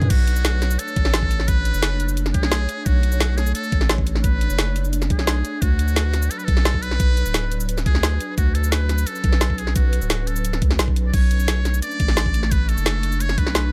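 A buzzy, metal-muted trumpet sings a smooth jazz-style solo line with vibrato over a glassy, ethereal FM pad carrying chorus, phaser, reverb and sidechain pumping and a deep, saturated sub bass from the start of this lush, rolling liquid drum and bass drop, cut from a longer piece, where an overdriven, knocking electronic kick joins at 0.1 seconds beside an up-front, overdriven kit of woody snare, bright hats, cabasa, crash and toms, all in a dry, close sound as the chords move from Bm9 to D6 at 5.6 seconds and back to Bm9 at 11.1 seconds.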